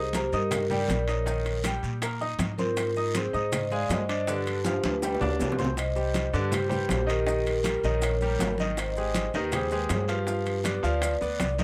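A mellow vibraphone, played with soft mallets and its motor off, carries the melody in this fiery, danceable salsa excerpt, its metallic tone smooth and dark. Beneath it, a bright baby grand piano adds brilliant, intimate accompaniment with short sustain and audible action noise. An upright bass with gut strings sits up front, woody and thumpy in its pizzicato playing. Just after the start the percussion joins: ringing metal-shell timbales in a live room, along with hard-handed congas with a thin, damped skin and a vintage, band-limited edge and round, low-tuned bongos that sound compressed and saturated. These sit back in the mix with a raspy guiro and grainy maracas heard close and dry. A drum fill from 4.6 to 5.8 seconds leads into the second half, where the progression moves from Cmadd9 through Eb7/Bb and Abmaj7 to G7, all in a straight 4/4 under light reverb.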